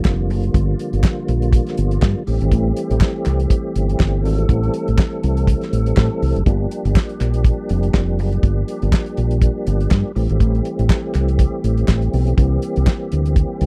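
A tonewheel organ sustains clear, clean chords with audible key click, chorus vibrato and a slow rotary speaker, alongside crisp small-room group handclaps, as this glamorous, danceable disco piece at 122 BPM in G dorian settles into a lightly swung 4/4 groove built on an up-front damped 70s drum kit with a fat snare, tight kick and rolled-off top, and a dark, round fingered electric bass, captured in a dry, close 1970s-style studio sound and moving between Gm7 and Am7 before a C7 arrives at 12.4 seconds, just ahead of the claps stopping at 13.0 seconds.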